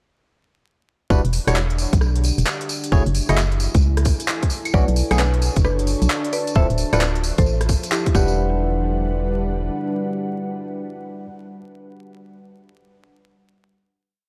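This is a short, complete piece of two-step UK garage at 132 BPM in E dorian, late-night and soulful, with swung sixteenths and a dry, gritty hardware sound dusted with vinyl crackle. The drop begins at 1.1 seconds: a tight, up-front electronic kick plays a two-step pattern, a garage kit adds crisp skipping hats, rims, claves and claps, and a bright, band-limited tambourine jingles in hand-played sixteenths. Underneath, a hollow, organ-like FM bass runs a syncopated, skipping line with sidechain pumping, while a barky tine electric piano, roughened by 12-bit sampler grit and tape echo, stabs one parallel chord shape through Em9, F#m9, Bm9 and Dm9. A deep, moody ambient pad shifts slowly beneath with chorus and reverb, and at 4.7 seconds a woody, round mallet-like pluck brings in a repeating riff in thirds and sixths, soon joined by an ethereal, airy pad on sustained chords. The drums drop out between 8.1 and 8.4 seconds, just after the return to Em9. 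The bass lingers briefly, and then the pads, piano and pluck ring out a final note until the end.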